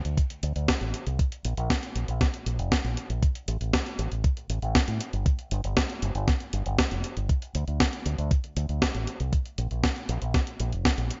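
A dry, dark-topped mix with its highs rolled off above 7.5 kHz frames this nostalgic, danceable italo disco excerpt, moving at a straight 118 BPM in 4/4. A fingered electric bass sits up front, bright and amped through an envelope filter, ranging from F1 to A2. A clean 12-bit drum machine supplies hi-hat and a medium-tuned, tape-warm snare bathed in gated reverb, while a thumpy, sampler-style electronic kick carries the pulse, both drum parts re-recorded in a small room.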